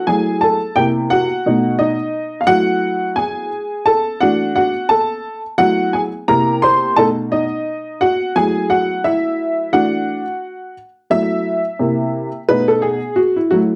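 A swung 87 BPM hip hop groove in 4/4 and F# minor carries this cool, mellow excerpt, played entirely by a solo upright piano that sits up front with a woody, worn, boxy tone, short sustain, audible action noise and a slightly detuned edge. Its chords cycle through F#m9, C7, B7 and E9sus4, then turn to F#m7 when a new section begins at 11.1 seconds, running until 13.8 seconds. A slapback echo on the piano and a moderate studio reverb give the dark, intimate production a close, lived-in feel.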